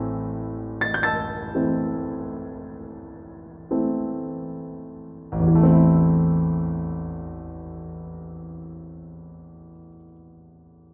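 A romantic classical nocturne for solo piano in A minor, this brief excerpt from a longer piece unfolds in a slow, rubato 9/8 at roughly 23-30 BPM, its mood mournful and wistful. The concert grand sits up front with deep bass, an open tone and short sustain, ranging from A1 to A6 and slowing down through the first 5.3 seconds before a new section begins. A wet recital hall reverb and dark production surround the playing until it ends at 10.9 seconds.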